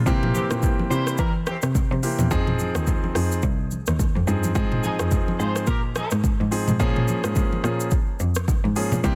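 Afrobeats with a joyful, romantic glow, swinging lightly over an electronic afro-pop kit with a deep kick, smooth hats, rim clicks, shaker and toms up front, while low-tuned, band-limited congas sit bright and thin in the background. A single bowed cello carries the bass line with a biting, earthy tone and light vibrato, and a polished baby grand piano sits present in the mix, moving through C7, Fm7, Ab6 and Bbm7. A distant, roomy horn section in jazz style adds a warm second line until 6.1 seconds, all within a dense, heavily limited modern master of this short cut from a longer piece.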